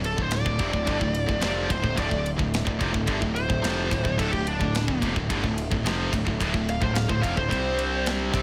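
A short cut from a longer heavy metal piece opens at 108 BPM in D minor with an aggressive, relentless riff from three bright, picked distorted guitars, two set in the background and one very quiet. They play over a growly fuzz bass, a tight, up-front acoustic drum kit of kick, snare and ride with a rolled-off top, and a very quiet, dark, detuned sawtooth pad holding sustained chords. From 0.1 seconds a high-gain lead guitar plays a solo melody, its tone treated with tape echo. The harmony rests on D minor before shifting to a C5 chord at 7.5 seconds, all within a studio ambience.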